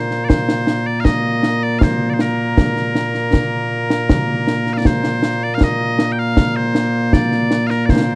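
A stately 3/4 pulse at 79 BPM, played straight, carries this short cut of Scottish traditional pipe music in Bb major, with A4 tuned to 441 Hz. Loud solo bagpipes carry the melody from the opening to 8.2 s, their piercing, continuous tone placed up front and spanning Bb2 to G5. A concert snare drum and concert bass drum enter at 0.1 s, heard close and acoustic, with bright cymbals. The opening phrase is stated once and then repeated from 4.8 s, giving the passage a proud, ceremonial character. Little reverb and a dark production frame the loud pipes and drums.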